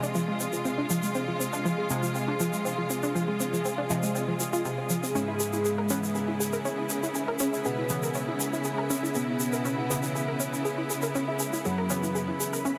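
Dark and hypnotic, this melodic techno excerpt moves in a straight 4/4 pulse, shifting from F minor to C-sharp minor seventh at 5.2 seconds. A distant, focused symphonic string section holds sustained chords with vibrato, while a round, detuned analog pluck spins arpeggios through chorus and tape echo. Behind them, a brassy, nasal synth stab punches in from the background with chorus, phaser and tape echo, and a grainy, saturated tube shaker keeps the percussion going. A cloudy granular pad drifts and evolves high above, blurred by its own reverb. At 5.2 seconds a fat analog lead with a sub octave and vibrato enters carrying a mellow melody under lush chorus and delay, all set in a huge, wet ambient space within a dense, heavily limited modern master.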